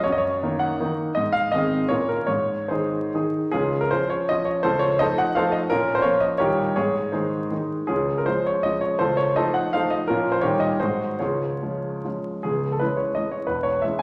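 A clear, intimate grand piano plays alone from the start, up front and with its action noise audible, in this short fragment of a rustic, graceful romantic triple-time dance in Db major with dotted rhythms and a rubato feel at 135-191 BPM, set in a wet recital hall reverb with vinyl crackle as the harmony moves through Db, F7/Db and Bbm before darkening to C#m at 12.4 seconds.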